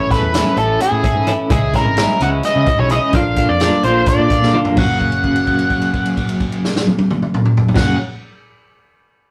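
Kaleidoscopic and hypnotic, this short cut from a longer psychedelic rock piece moves in a straight 7/8 at 257 BPM counted in eighths, centred on F# mixolydian. An octave-fuzz lead guitar carries the melody up front with a dark, distorted edge, while a bright, twangy twelve-string electric guitar plays a clean, compressed riff treated with tremolo. Beneath them, a fingered electric bass sounds round and foam-muted through its amp, and a vintage acoustic drum kit with a tight kick, medium-tuned snare and rolled-off top works through hi-hat, crash and toms. The chords move from A to C#m to A#, and a drum fill at 4.4 seconds leads into an F# passage where a held note rings from 4.8 to 7.8 seconds. The whole take has the rough feel of a rehearsal room, with tube saturation and a moderate small-room reverb.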